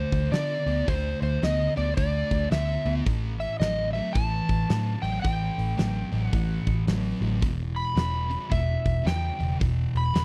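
A swung 4/4 groove drives this raunchy, gritty blues rock and southern rock excerpt, with the big acoustic drum kit joining at 0.1 s on a fat snare, punchy kick and hi-hat. An up-front, overdriven slide guitar carries the dark melody through slapback echo, while a double-tracked fuzz guitar grinds out the riff beneath, and a round, foam-muted picked electric bass anchors the low end. The dry, close sound has the feel of a 1970s studio, and the chords move from D5 to A5 to E5.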